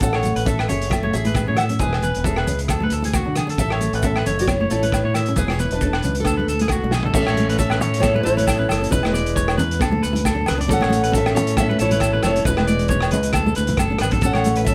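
A fingerpicked steel-string acoustic guitar carries the melody with fresh strings and audible finger squeak in this sunny highlife guitar band excerpt at 135 BPM in A major, over a round, dark fingered electric bass, a full-bodied nylon-string guitar in the background, twangy, slightly broken-up electric guitar arpeggios, a gritty, saturated breakbeat drum kit with fills at 6.9 and 13.8 seconds, and background ringing agogo bells, grainy maracas and bright, high-tuned congas, while a breathy, whispered alto saxophone slips in with a second line at 7.1 seconds, all played live in one room with moderate reverb.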